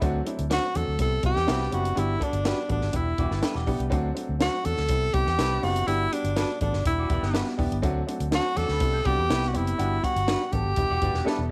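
A breathy tenor saxophone leads this uplifting, danceable excerpt of uptempo 1960s-style soul in G major at 123 BPM, entering at 0.5 seconds with subtone, vibrato and scooped jazz-style notes. Beneath it, a dark, round, foam-muted electric bass with tube saturation sits up front beside a woody upright piano and a compact cocktail kit with a punchy kick and high-tuned snare. Two electric guitars through a small old amp sit in the background: one plays compressed, slightly broken-up stabs, while a bright, twangy, lo-fi riff with analog chorus arrives at 1.4 seconds. The band cycles through D7, Cmaj7, Gmaj7 and Em7 in light studio reverb before a drum fill at 11.3 seconds.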